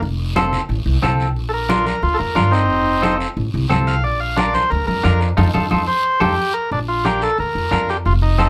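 A woody, thumpy upright bass, ringing congas under soft hands and a raspy guiro open this festive, danceable cumbia excerpt, joined almost at once by the bright, picked tones of a semi-hollow electric guitar. At 1.5 seconds a vintage, buzzy combo organ steps up front with a solo melody, and the band hits an accent from 5.4 seconds before the music moves into a new section at 6.7 seconds. The live-in-one-room sound carries a small room's moderate reverb and a faint mains hum.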